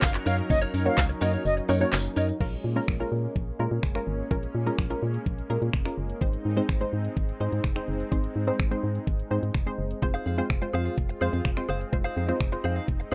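A rough home-demo mix with light reverb carries this driving, confident dance-pop excerpt, which opens on a drop where a pure, vibrato-rich concert flute with delay and a jingly tambourine in the background sit atop the groove, the kick muted from 1.5 seconds before both flute and tambourine fall away. Sidechain pumping runs through the punchy, detuned sawtooth pluck, the thick, chorused unison pad and the hollow, organ-like FM bass, while an up-front smooth R&B kit supplies a knocking kick, woody snare, metallic hats, finger snaps, handclaps, shaker and crash. A bright, clean direct-recorded electric guitar with analog chorus plays a riff in the opening, drops out, then returns at 10.0 seconds over the Fm chord, the harmony having already moved from Bbm7 to Fm.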